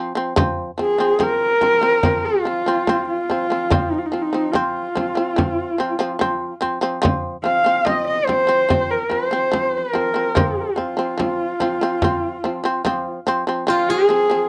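A dark, husky horsehead fiddle carries the melody in this vast, windswept Mongolian folk piece. It enters at 0.8 seconds and sits up front, its woody, bowed horsehair tone shaped by vibrato, portamento and a slapback echo. Beneath it, a fretless shamisen plays plectrum-plucked arpeggios from the first moment, its buzzing, percussive attack powerful and close, while a deep, large frame drum is struck with hard hands. Near the end, at 13.7 seconds, a steel-string zither played with fingerpicks adds a brief silvery, ringing second line. The sound is a dry, close 1970s-style studio recording with light reverb, and the passage is cut from a longer piece.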